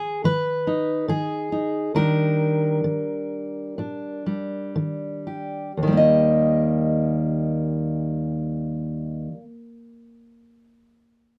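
In straight 4/4 at roughly 58-73 BPM, this short folk passage for solo fingerstyle acoustic guitar moves unhurriedly, and the tempo slows through the first 5.8 seconds. A fingerpicked steel-string dreadnought carries everything alone from 0.0 to 9.4 seconds, sitting up front with a dark, full-bodied tone that spans Eb2 to Eb5. In Eb major, the harmony opens on Abm before settling onto Ebmaj7 at 2.0 seconds, then resolves to a plain Eb as a second section begins at 5.8 seconds. That turn from the minor chord toward the bright home chord gives the music a hopeful yet nostalgic cast. A light reverb adds a touch of space around the guitar in this fragment cut from a longer piece.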